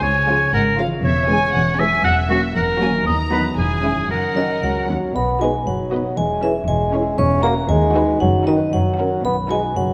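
Magical and playful, this whimsical cinematic cue in a light two-beat metre is cut from a longer piece. Muted string sections carry its veiled, con sordino sound: one violin section sings the melody with lush vibrato, a second violin section adds a quieter line in the background, and violas, cellos and double basses supply accompaniment and bass beneath. A concert harp rings out fingerpicked arpeggios throughout, while a clear, distant oboe sits up front on a second line until it drops out at 4.9 seconds. At 4.4 seconds, a vibraphone struck with hard mallets takes up the melody with a bright, metallic, dry tone, and a dark solo bassoon joins the accompaniment. A mellow French horn section adds sustained chords from 5.4 seconds, and the ensemble sits in a moderate scoring-stage reverb.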